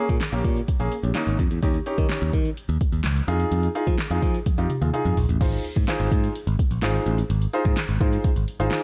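Dance-pop excerpt with a carefree, summery mood, where a warm, polished grand piano and a bright, growly picked electric bass both pump with sidechain compression over an electronic, roomy smooth R&B drum kit of soft kick, fat snare, metallic hi-hats, handclaps, toms and crash, a drum fill from 4.5 to 5.4 seconds leading the Bbm7, Eb7 and Fm7 changes into a new section on Ab6, the mix sitting in a dark digital ambience.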